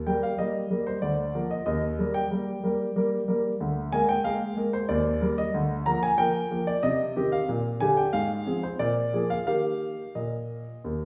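In a straight 3/4 at 93 BPM, this cheerful, graceful classical-period piano sonatina in Eb major features a clear, up-front concert grand with deep bass ranging from D2 to Bb5, playing alone through the short 11.1-second cut, moving from Eb through Bb/D and Bb7/D, then Cm, Gm/Bb, Fm/Ab and Bb7 before settling on Eb at 9.5 seconds, all heard from further back in a wet stone room with a 1.3-second reverb.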